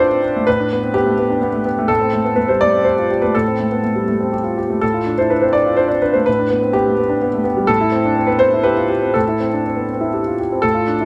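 A moderate studio reverb and a faint mains hum surround this short cut from a longer neoclassical minimalist piano piece in A minor, reflective and wistful, moving at 124 BPM in a rubato 3/4. A solo concert grand sits up front with an intimate, natural tone, deep bass and audible action noise, its slapback echo trailing the notes as it ranges from A2 to D5. The harmony circles over an A bass through Gadd9/A, Am7 and Dm/A, returning to Gadd9/A at 6.3 seconds, and the piano plays until 11.1 seconds.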